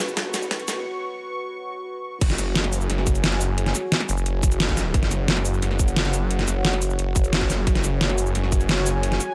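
Dark technical drum and bass, mechanical and tense and cut from a longer piece, where a short build-up with a drum fill, a filter sweep and a break gives way to the drop at 2.2 seconds: a snarling, detuned sawtooth bass growls up front over an overdriven electronic kit of deep snare, metallic hats, cabasa and crash, a tight, tape-warm electronic kick enters at 0.2 seconds, and a moody analog pad with chorus and sidechain pumping holds sustained chords beneath, inside a high-passed digital ambience.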